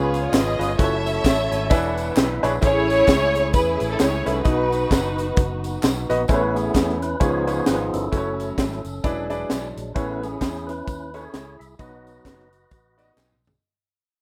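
A swung 4/4 groove at 131 BPM drives this hopeful, reverent uptempo gospel excerpt, led by an up-front tight funk drum kit with a high-tuned snare and tight kick, over a dark, round fingered electric bass and a distant tambourine and handclaps in the background. A smooth, bowed studio string section carries the vibrato-rich melody until 5.8 s, while a brilliant baby grand piano with audible action noise accompanies and a fat, clean tonewheel organ with key click and fast rotary speaker holds sustained chords and adds an early fill; all three sit in plate reverb. From 6.3 s the organ takes a solo as the piece fades out, capped by a drum fill at 13.2 s, in a rough home demo mix with moderate studio reverb.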